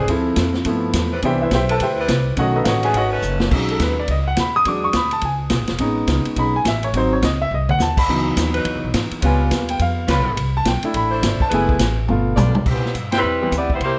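In a moderate large-studio reverb, this energetic, brassy big-band swing piece at 210 BPM spotlights an intimate baby grand piano soloing up front until 12.7 s, its action noise audible, over woody pizzicato upright bass, a swinging drum kit with a punchy kick and fills, and soft-attack sustained saxophone chords, before a mellow, vibrato-laden saxophone section takes the melody and a vintage trumpet section joins a band accent at 13.1 s.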